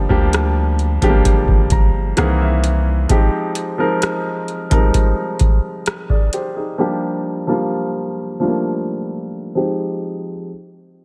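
Contemporary R&B at a slow 65 BPM in F dorian, moody and late-night, this short excerpt places an up-front, low-pass-filtered grand piano with a filter sweep and a fill between 1.2 and 3.1 seconds over chords moving through Gm7, C7alt and Fm9, while a deep, mellow, sine-toned 808-style bass with a fast attack sustains and decays until 3.1 seconds, and a booming, tape-tinged analog drum machine with a deep kick, metallic hi-hats and rim clicks sits forward until 6.5 seconds, set in a digital ambience.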